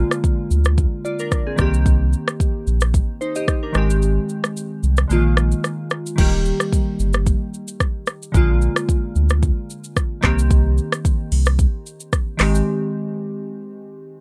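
Afrobeats in Eb major at 111 BPM with a lightly swung sixteenth feel, joyful and romantic, cut from a longer piece. Glassy digital keys with chorus and a bright, decaying tone carry the chords, a round sine sub bass holds the low end, and an electronic afro-pop kit with a deep kick, metallic hats, handclaps, rim clicks, shaker and crash drives the groove, with the kick dropping out from 4.0 to 6.2 seconds. The dry, up-front mix moves through Bb7, Cm7 and Abmaj7 changes before the bass falls away at 12.6 seconds and the drums at 12.7, leaving the keys alone to close.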